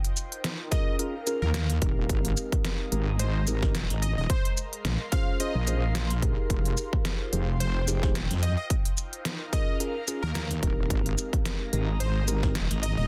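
Swung 16ths at 109 BPM drive this playful, funky glitch hop piece, where a dubstep kit of crisp hi-hats, shaker and deep snare opens at 0.0 s beneath an airy, breathy pad with chorus, phaser and sidechain pumping; a punchy electronic kick, a bright, detuned plucky unison lead with tape echo and mellow tine electric piano stabs arrive at 0.7 s, and a heavy, saturated wobble bass sits up front from 1.4 s over Eb7sus4, Abmaj7, Bbm7 and Fm7 chords in a dense, dry, heavily limited mix.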